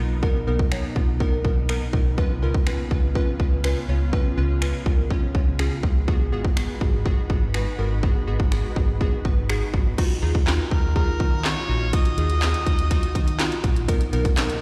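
Heard through a big sound system in a bare stone room, this driving, confident dance-pop excerpt is built on a punchy, overdriven house drum kit of kick, cracking snare, hi-hat, handclaps, finger snaps and crash up front, with a dark, round muted fingered electric bass, glassy chorused digital keys and an ethereal, detuned pad in the background all breathing with sidechain pumping, until a mellow harmonica with light vibrato and scooped notes adds a short delayed melody from 10.7 to 13.6 seconds.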